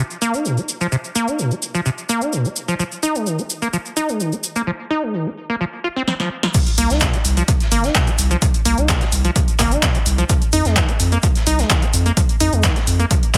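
A heavily compressed, radio-like sound with light reverb frames this raw, hypnotic acid house excerpt, cut from a longer piece and moving at 128 BPM in a straight 4/4 in C minor. A squelchy, resonant sawtooth acid bass carries the riff from the start, up front with overdrive, subtle chorus, tape echo and sidechain pumping, its smooth, decaying tone shaped by a filter sweep. Beside it, a dry, punchy analog drum machine with an overdriven snare lays down crash cymbal, handclaps, hi-hat, shaker and snare while a filter sweeps over the drums, and a short drum fill leads into the drop at 6.5 seconds. There a punchy electronic kick drum arrives, re-recorded in a small room, along with a very quiet, gritty acoustic shaker and snare part whose medium-tuned snare has a rolled-off top and a pumping room sound. A deep, thick sine sub bass joins at 6.8 seconds, saturated and sustained with sidechain pumping beneath everything. 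The harmony moves between a rootless Cm7 and Fm7, then returns to Cm7 and Fm7 after the drop.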